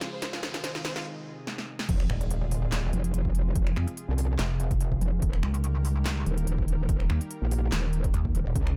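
Heavy wobble dubstep in a half-time, chaotic and menacing mood, cut from a longer piece: a dark, expressive violin section with delay sings briefly over a lush, warbling unison pad that pumps under sidechain, while a punchy, layered dance kit of crisp hats, snare, snaps, claps and crash drives a build-up with fills, a very quiet riser and a short break. At 1.9 seconds the drop lands on an impact as an electronic kick and an up-front, saturated metallic wobble bass join the pad and kit, with a second up-front, saturated wobble bass following at 2.1 seconds. One is metallic and aggressive, the other pulsing and heavy, both with chorus and overdrive, moving from Fm to Eb. The sound is dry, with the basses loudest in the mix.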